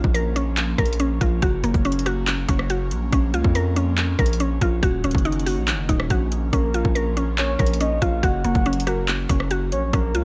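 A half-time trap groove drives this hard-hitting, eerie hip hop excerpt, with an electronic kit of hard-clipped kick, bright hi-hats, handclaps and rim clicks, overdriven and sitting up front. Beneath it, a distorted 808-style bass hits with a fast attack and decaying, saturated weight, heavy and aggressive in the mix. A woody, round, mallet-like synth pluck spins arpeggios through chorus, a low-pass filter and tape echo, while a soft, breathy pad holds sustained chords behind it, colored by chorus and phaser. The harmony circles through B-flat minor, G-flat and E-flat minor seventh, all wrapped in a haze of vinyl crackle. At 6.5 seconds a dark, octave-layered synth lead enters as a second line, its full tone shimmering with tremolo, vibrato and tape echo until the clip ends at 10.2 seconds.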